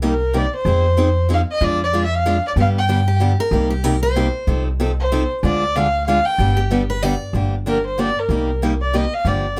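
Close, detailed microphones and light reverb frame this fiery, bittersweet jazz manouche excerpt, swinging at 188 BPM in 3/4 and tuned to A4 = 436 Hz, where a nasal, earthy bowed violin with light vibrato carries the melody over a bright, boxy picked steel-string guitar accompaniment and a woody, thumpy pizzicato upright bass, while a second picked guitar with audible finger squeak adds a line from 3.1 to 7.3 seconds before the violin takes a solo at 7.3 seconds over changes moving from Gm7 to Cm7.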